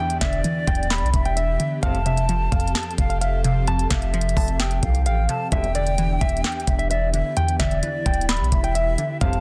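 Cut from a longer eerie, hard-hitting half-time trap piece, this passage opens on a dark, clean electric guitar melody steeped in spring reverb and delay over a crystalline, chorused wavetable pluck and a soft, breathy chorused pad, before a very quiet downlifter and an up-front trap kit with knocking kick, sharp snare, crisp hats and handclaps arrive at 0.1 seconds, joined at 0.2 seconds by a deep, sine-toned 808 bass and a hollow, close-miked concert flute carrying a second line with delay, while mellow classical-style brass ensemble stabs punctuate the dense, heavily limited master at 1.8 seconds and later.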